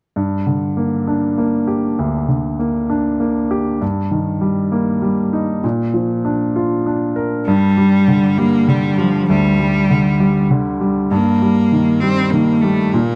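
Melancholic and dramatic, this pop fragment in a straight 6/8 opens on a clear, polished baby grand piano, up front and playing accompaniment through chords that settle from Gm toward Bb. At 7.5 seconds a single bowed cello enters with the melody, biting and intense with vibrato. Light reverb sits around the dark production.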